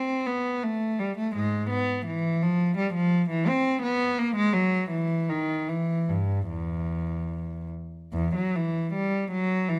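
Solemn and grave, this brief passage cut from a longer piece is a baroque-style suite movement for unaccompanied cello, moving in a flexible three-beat metre with a rubato feel. A single bowed cello plays alone for the whole 9.8 seconds, ranging from E2 up to C4, its rich tone shaped by vibrato, soft attacks and portamento slides between notes. The playing is expressive, and the harmony shifts from A minor toward E minor from 3.5 s. Near the end, at 8.2 s, the phrase gives way to a new section that carries the line to its close. Close, detailed microphones keep the cello up front, with a light reverb giving the sound a touch of room.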